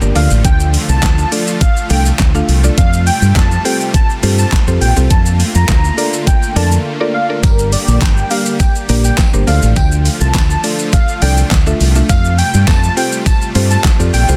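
A dense, heavily limited modern master wrapped in digital ambience frames this bittersweet, energetic dance-pop excerpt at 103 BPM in straight 4/4. Up front, an overdriven, layered pop drum kit with a knocking kick, fat snare, warm hats, handclaps and shaker drives the groove beside a dark, round, punchy fingered electric bass that pumps with sidechain compression. A woody, mellow FM mallet-like pluck with chorus and a huge, bright, detuned supersaw chord bed also pump with sidechain compression, moving through Dm, Fadd9, Bbmaj7 and Gm. An airy, dreamy lead built from a soft sine tone with a noise layer carries the melody with vibrato, chorus and delay, while a barely audible downlifter sweeps through the opening seconds. After a short break at 6.9 s, a very quiet, jingly vintage tambourine joins from 7.4 s.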